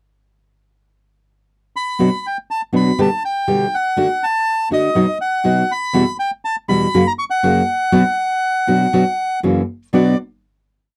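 A reedy, dark bandoneon carries a motif-based melody in period phrases from 1.8 s, set up front in this short, tense and dramatic tango played with a rubato feel. From 2.0 s a full-bodied nylon-string guitar, also up front, accompanies in the classical tango manner with short fingerpicked chords, its finger squeaks audible. The dry, close 1970s-style studio sound carries a light reverb, and the piece comes to rest on a final chord at 9.9 s.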